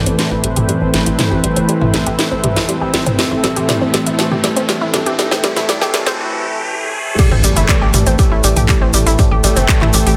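A straight 4/4 pulse at 120 BPM drives this dark, dramatic melodic techno excerpt in A minor, where a tape-warm house drum kit with cracking snare and metallic hats, a tight sawtooth sequencer bass, a nasal analog pluck playing arpeggios through tape echo, bold brassy analog pad stabs, a smooth chorused analog pad, a cloudy granular pad and a faint string-like bowed drone all build over an Am7 chord with sidechain pumping, filter sweeps and a background riser, until a break at 6.2 s gives way to a drop at 7.2 s, marked by an impact, where a punchy electronic kick, a grainy egg shaker and a very quiet, gritty sampler-style kit with ride cymbal join under a lush hall reverb.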